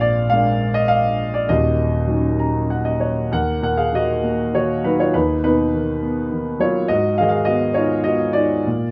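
In a rubato 3/4 at 101 BPM, this brooding, moody fragment of lyrical classical solo piano in Eb minor features a dark, mellow, somewhat boxy grand piano, up front with long sustain and spanning Eb1 to Bb5, moving from Bb7 to Ebm7, adding a fill from 2.1 to 3.3 seconds, and then settling into a second passage over Ebm, B/D# and Abm7, all captured by close, detailed microphones in light reverb and cut from a longer piece.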